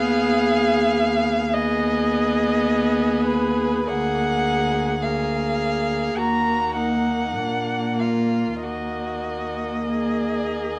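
A muted first violin carries the melody up front in this slow, romantic string quartet movement, its veiled tone shaped with vibrato, portamento and a smooth top register. The mood is solemn and yearning, and the playing breathes with a free, rubato pulse. A second muted violin adds an inner line with the same vibrato and sliding portamento, while a close-sounding muted viola supplies soft-edged accompaniment. A muted cello anchors the bass with light vibrato, gentle attacks and its own portamento, lending a dark foundation. All four single players bow con sordino for the full 10.8 seconds of this passage cut from a longer work, set in a light reverb.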